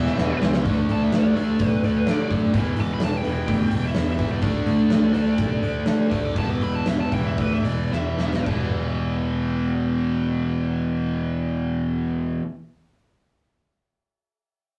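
A straight 4/4 hard rock pulse between 107 and 128 BPM drives this menacing, aggressive excerpt, where a dark, high-gain lead guitar solos from 0.6 to 8.5 seconds over tight distorted and crunchy overdriven guitar riffs, a growly picked bass, and a big drum kit with a fat snare and punchy kick that fills at 7.9 seconds as the tempo slows from 4.4 seconds, before the guitars and bass carry on alone to the end in a rough rehearsal-room sound with small-room reverb.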